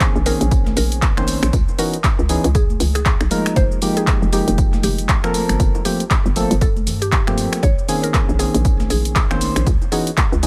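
A dry, close-sounding excerpt of late-night deep house rolls along at 118 BPM in 4/4, its sixteenths swung at 59% for a hypnotic shuffle. A punchy, tape-warm electronic kick anchors the groove alongside an analog drum machine of finger snaps, handclaps, hi-hat and shaker. A very quiet, gritty sampler-style snare with tambourine sits behind them, and bright, hard-handed bongos and congas join at 0.3 seconds. From 0.2 seconds a hollow, bouncy FM bass knocks between F1 and G2, pumping against the kick, while dark, organ-like stabs with chorus and the same sidechain breathing voice the minor-eleventh chords, moving from Bbm11 through Dbm11, Fm11 and Gm11. Floating in the background, a woody, round mallet-like synth pluck traces a short melody between G4 and Db5 through chorus and digital delay, giving the loop a soft, echoing sheen.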